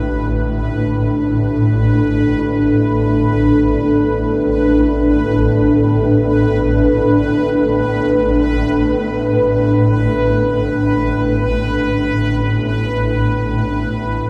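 Dark ambient drone in free time, unsettling and cavernous, cut from a longer piece and soaked in a huge reverb with a seven-second tail. A deep, moody analog pad holds sustained chords with chorus across the full 14.3 seconds, while a swarming, tense drone sits up front in the low register, detuned and ring-modulated with a granular, evolving grain. Above them, a bright, resonant texture bubbles through random filter steps on a single high note, blurred by chorus and its own reverb.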